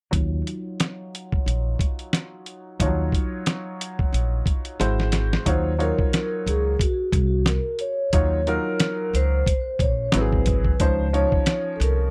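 Cool and smoky, this swung jazz-hop excerpt puts a gritty, compressed sampler-style drum kit with a thumpy kick and a woody pizzicato upright bass up front beneath a smooth, vintage upright piano that carries a low-pass filter sweep through the opening section, which closes with a drum fill at 4.8 seconds, after which a mellow, ringing vibraphone played with soft mallets enters at 5.5 seconds with slow motor vibrato and tape echo, captured as a dry, close 1970s-style studio recording.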